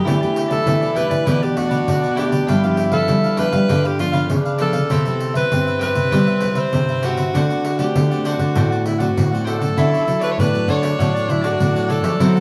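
Samba and choro at 99 BPM in a straight 4/4, sunny and playful, cut from a longer piece: a breathy, up-front alto saxophone carries the melody with vibrato, subtone and scooped notes, while a mellow, distant tenor saxophone adds a second line with light vibrato. A crisp picked cavaquinho and a thumb-plucked classical nylon-string guitar provide accompaniment, a full-bodied fingerpicked nylon-string guitar plays the bass in the background, and a jingly, vintage-sounding pandeiro played with hard hands supplies the percussion. The band plays live in one room with a wet studio reverb, moving from Em11 through G7, Cmaj7 and D7 before a new section opens on Dmaj9 at 9.8 seconds.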